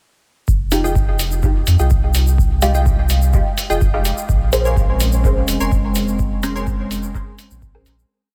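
A lightly reverberant dub techno piece, deep and hypnotic, where a smooth sine sub bass glides in long notes under an analog four-on-the-floor kick, a compressed, pitched-down, muffled hi-hat and a grainy, close egg shaker in sixteenths. Sparse echoing chord stabs move one shape in parallel over Fm9 and then Bbm9: a muted, phased sawtooth stab pumps against the kick, while a crisp digital wavetable stab with analog chorus rides higher until 6.7 seconds. A warbling, nostalgic lo-fi pad enters at 4.9 seconds just before the whole groove fades out from 5.6 seconds.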